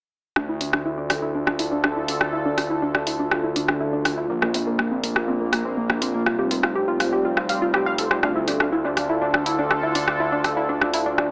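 From 0.4 seconds a cinematic, hypnotic melodic techno groove at 122 BPM in D minor arrives at once: an overdriven house drum kit with bright hats and rim clicks sits up front, a tight, detuned sequenced synth drives chorused arpeggios through a filter sweep with dub echo, a gritty, saturated synth bass growls underneath, and a sweeping resonant pad holds slow-attack chords moving from Dm to Bb to Fsus2 and back to Dm, all set in an echo-heavy mix with plate reverb and a small-speaker sound in this short cut from a longer piece.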